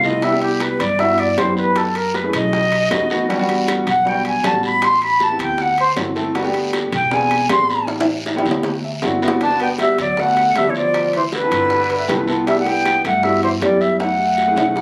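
Lively and danceable, this excerpt of Afro-Cuban jazz in G major at 157 BPM features an airy, vibrato-laced silver flute carrying the melody as a solo over intimate grand piano chords with audible action noise, woody pizzicato upright bass, soft low-tuned bongos, a raspy guiro and ringing metal-shelled timbales with drum fills, until a breathy, whispered tenor saxophone with slapback echo joins at 9.4 seconds with a mellow second line, all captured on a phone in a compressed club room.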